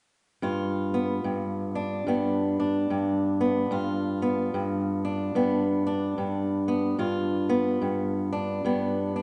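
Acoustic country blues in G mixolydian, this short excerpt from a longer piece moves at a laid-back 73 BPM in 4/4 with a gentle swing on the eighth notes. A single fingerpicked acoustic guitar carries the whole passage, playing in a swing style from 0.4 to 9.2 seconds and ranging from G2 up to F4. Its tone is warm and boxy and sits up front, giving the soulful mood an intimate, close-at-hand quality. The harmony rests on a G7 chord from the start. The guitar rings out in a wet recital-hall reverb with a 1.6-second decay, captured in a church or concert hall where the top end stops at about 10.7 kHz, lending the sound a soft, rounded glow.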